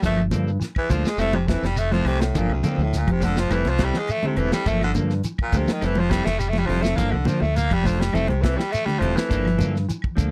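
A mellow guitar's spring-reverbed arpeggios and a clean guitar's chorused stabs run through this hypnotic, defiant afrobeat fragment at 104 BPM in G dorian, over a round, punchy fingered bass up front, a tight funk kit with a fill at 6.5 seconds, high-tuned congas, grainy shekere and woody claves in the background, while a raspy, gritty baritone saxophone solos with vibrato across the Gm9 to Fmaj9 vamp in a dry, close 1970s-style studio sound.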